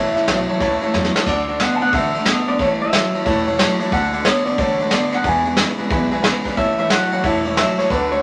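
A clean electric guitar solo opens this rowdy, upbeat rockabilly excerpt, its twangy, picked lead coming through a small old amp, and the brush drum kit joins at 0.2 seconds, with a drum fill leading into the next section at 1.3 seconds. The swung groove moves through A, D, E7 and back to A, while a second electric guitar, bright and slightly broken-up, plays a low riff soaked in spring reverb. A clear upright piano accompanies with a polished, woody tone, audible action noise and long sustain. A full-bodied jumbo acoustic guitar sits very quiet underneath, and the upright bass thumps in the background on gut strings. The drums stay up front, with brushes, a punchy kick, a medium-tuned snare and dark ride and crash cymbals, and a wet studio reverb adds a short sheen to the mix.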